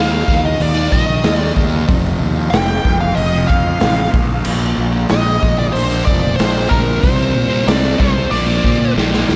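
A straight 4/4 pulse at 93 BPM drives this dark, mysterious psychedelic rock passage, where a gritty, punchy garage drum kit enters at 0.3 s beneath a round, fuzzed fingered bass, a double-tracked fuzz guitar riff swirling with phaser, and a smooth, overdriven lead guitar melody colored by wah and diffuse ambient delay that ends at 8.9 s, the dreamy mix soaked in huge reverb before a drum fill at 9.0 s.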